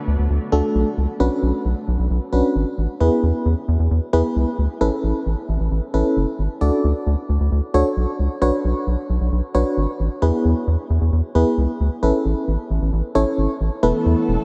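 A dreamy mix soaked in cathedral reverb frames this nocturnal, melancholic pop excerpt, cut from a longer piece, where a round, dark analog bass sits up front from the start. An FM electric piano with tremolo, mellow and decaying with a faint noise layer, carries the accompaniment over a repeating progression from D through Bmadd9, E and Aadd9. At 13.8 s, just as the harmony settles on Esus4, a very quiet, vintage organ-like string ensemble slips in with phaser and chorus for the closing moments.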